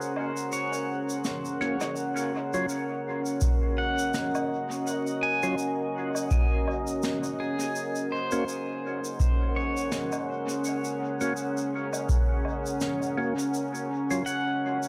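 Ambient dub with a meditative, deep mood, cut from a longer piece, where a moody sawtooth pad sustains detuned chords beneath fingerpicked pedal steel arpeggios trailing dub echo, brushed shaker, woodblock, snare and rim click, and a bright glass-harmonics texture that drifts in the background only until 2.0 s, while a fat tonewheel organ with key click and slow rotary speaker enters with filter-swept stabs at 1.6 s and an analog electronic kick sits up front from 3.4 s, all inside an echo-heavy mix with spring reverb.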